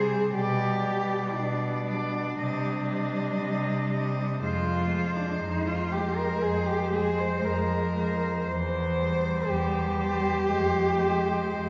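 From the first moment, four bowed cellos sound together in a solemn, elegiac classical passage in C minor, moving at a slow 59 BPM in 4/4 with a flexible, rubato feel. A single clear, focused cello carries the melody high in its range, sitting a little behind the others, while a dark, expressive cello plays a close, up-front second line, colored with portamento. Beneath them, a woody cello holds a narrow accompaniment, and a rich, smooth cello anchors the bass with an even tone. Every player uses vibrato. The harmony passes from G/B to C minor and F minor, then turns to C/E at 8.5 seconds before returning to F minor at 10.5 seconds. The ensemble is heard from further back in a recital hall, with a long, wet reverb and a softened top end, and this 11.7-second excerpt is cut from a longer piece.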